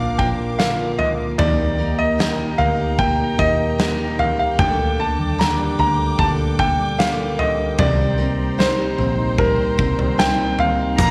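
Pop ballad with a heartfelt, tender mood, cut from a longer piece, led by a brilliant, up-front grand piano melody with long sustain over a clean tine electric piano, a full-bodied picked steel-string acoustic guitar playing arpeggios in the background, and a round, foam-muted fingered electric bass. A dark studio string section holds soft-attack sustained chords played sul tasto with light vibrato, while a huge arena drum kit enters at 0.2 s with a punchy kick, a medium-tuned snare, toms and bright crash cymbals in a big room. At 11.0 s a lush violin section line and a grainy tube shaker arrive just as the excerpt ends, all set in light reverb and studio ambience.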